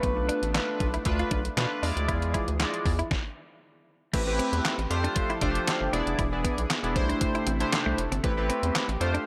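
A detuned, overdriven 8-bit drum machine with a thumpy kick and handclaps drives this danceable, slick early-eighties boogie funk excerpt alongside a rubbery, up-front square bass and a glossy chorused polysynth, while a shimmering pulse-width pad and a dark, clean semi-hollow electric guitar riff with analog chorus sit in the background, all under light reverb, with a stop from 3.1 to 4.1 seconds before the groove returns on Am9.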